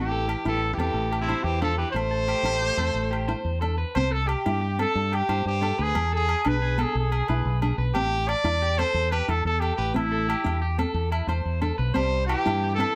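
With light reverb, this carefree, joyful fragment of highlife guitar-band music in 12/8 at 120 BPM sets a clear, forceful trumpet melody up front over a round, punchy fingered electric bass, with a dark fingerpicked steel-string acoustic guitar showing finger squeak, twangy, slightly broken-up electric guitar arpeggios entering at 0.1 seconds, ringing agogo bells in the background, and a raspy, growling tenor saxophone second line that drops out at 3.6 seconds and returns at 12.0 seconds.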